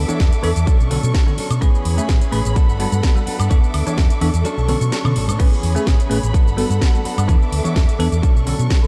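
Joyful and feel-good, this filtered disco house cut in A major moves at 127 BPM with a light 16th-note swing, as a punchy, up-front electronic kick and a house kit of cracking snare, metallic hats, shaker, woodblock and crash drive beneath a round, dark hollow-body bass, a bright clean guitar riff, a bell-like tine electric piano treated with phaser, and lush, distant bowed strings with vibrato and portamento, all but the kick breathing with sidechain pumping through chords like E7sus4, Bm9, Amaj9 and Gmaj9, while the kick drops out briefly from 4.5 to 5.4 seconds.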